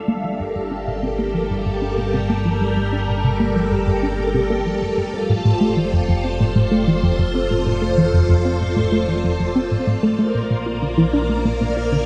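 A steady, straight 4/4 pulse driven by a tight sequenced synth riff anchors this expansive, luminous piece of ambient space music, cut from a longer work. The sequenced synth is detuned and wave-folded with a filter pluck, colored by chorus, phaser and delay, and a filter sweep runs across its arpeggio throughout. Beneath it, a fat analog bass gives a thick, ring-modulated low end, while a lush vintage string machine holds sustained chords up front, soft in attack and treated with phaser, ensemble chorus and shimmer reverb. A very quiet, breathy noise layer drifts high above like distant wind. The harmony moves from Gmadd9 to F at 5.1 seconds and then to Bb at 10.2 seconds, all set in a wet scoring-stage reverb that gives the sound a spacious, glowing sheen.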